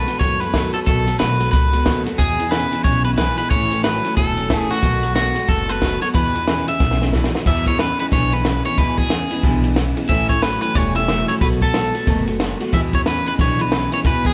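A twangy, slightly broken-up electric guitar carries the melody up front with spring reverb over a full-bodied picked acoustic guitar and a bright riff from a second electric guitar in the background, joined almost at once by a small cocktail kit with dark cymbals, a high-tuned snare and punchy kick, and a woody, thumpy upright bass, in a retro, rollicking swung rockabilly fragment played live in one room, with a drum fill at 6.8 seconds leading into the second section.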